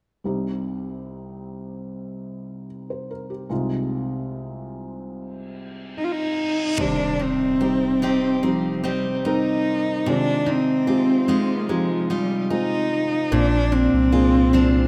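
Longing and emotional, this slow C minor pop excerpt at 74 BPM opens on a soft, felt-muted upright piano with audible action noise. At 6.0 seconds a close, bowed cello with smooth vibrato takes up the melody as an electronic reverse cymbal rises into an impact at 6.8 seconds, where picked, tape-echoed steel-string acoustic guitar arpeggios join. A round, deep sine sub bass then arrives at 13.3 seconds on a Bbadd9 chord, all in a lush hall reverb with a rough home-demo mix.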